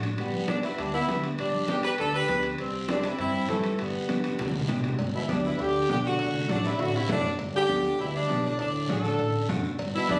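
A joyful, danceable cumbia in G major at 200 BPM opens with a dark, clean fingered electric guitar, woody pizzicato upright bass, a raspy guiro, and metal-shell timbales and cowbell sitting in the background. From 0.2 seconds, a tight, close-miked saxophone section carries the melody up front, while a mellow trombone adds a second line with light vibrato and scooped notes, and distant, ringing congas played with soft hands join in. A drum fill from 4.1 to 5.0 seconds leads into a second section over chords moving among G, C and D, all captured on a phone in the room with moderate studio reverb and compression.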